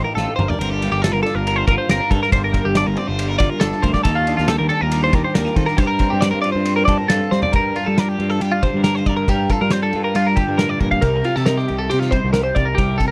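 A dry excerpt of intricate, wistful math rock and midwest emo, where an up-front, twangy twelve-string electric guitar with lush chorus plays chords over Gm7, Ebmaj9#11, Gm11 and Cm7 while a second bright twelve-string guitar spins phaser-tinged arpeggios above it, a fuzzy, overdriven picked bass punches underneath, and a loose indie drum kit with dark cymbals and a pumping room sound kicks off with a fill at 0.2 seconds and adds another at 7.3 seconds before the second section begins at 7.5 seconds.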